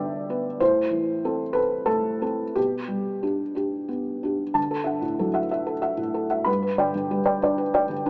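Intimate and tender, this short neoclassical minimalist piano piece, cut from a longer work, moves in a slow, rubato 6/8 at about 61 dotted-quarter beats per minute, its uneven pulse giving it a hushed, breathing quality. A felt-muted upright piano plays alone throughout the 8.1 seconds, sitting up front with a soft, mellow tone, thick felt dulling each note into a short sustain. Ranging from G2 to B5, it rests in G major and drifts from G through Am and G/B in the opening passage. At 4.6 seconds a second section begins on Dadd9 before settling back onto G at 6.5 seconds. Light reverb and a small speaker sound lend the recording a close, modest character.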